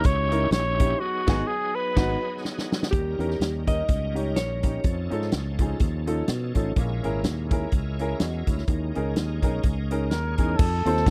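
A dry, close recording in a 1970s studio style frames this short cut from a longer uptempo gospel piece, swung in 4/4 with a solemn, soulful mood. A mellow cor anglais with light vibrato and a smooth top carries the opening melody up front in a classical style, stepping aside at 2.4 seconds and returning near the close. The band hits accents before a drum fill leads into the next section at 2.9 seconds, where a dark, clean lap steel guitar takes the melody with slide until 6.5 seconds. Underneath, a full, shouting tonewheel organ holds sustained chords through light overdrive, chorus vibrato and a slow rotary speaker, while a woody upright piano with long sustain plays accompaniment. The big-band drum kit sits up front with a boomy kick, medium-tuned snare, hi-hat and crash cymbal alongside a bright, direct fingered electric bass, as the harmony moves through dominant and altered sevenths, minor and half-diminished chords.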